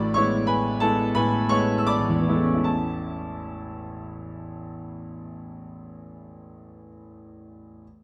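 A clear, up-front concert grand piano opens alone with open, deep-bass chords in this short, lyrical passage from a romantic character piece, played with flexible rubato that slows through the first 2.7 seconds before settling into a new phrase, all bathed in the wet reverb of a recital hall.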